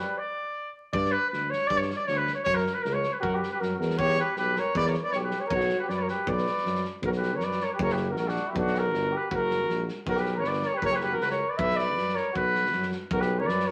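A mellow, punchy trumpet leads this restless, virtuosic Balkan brass band piece in B harmonic minor at 158 BPM in a lightly swung 2/4. A tuba with light vibrato and a loose acoustic drum kit, with its fat snare and punchy kick under a gritty, saturated, rolled-off top, join at 0.9 seconds. A warm flugelhorn second line sounds briefly at the start and returns at 3.2 seconds. The distant, roomy brass sits in a wet studio reverb over vinyl crackle.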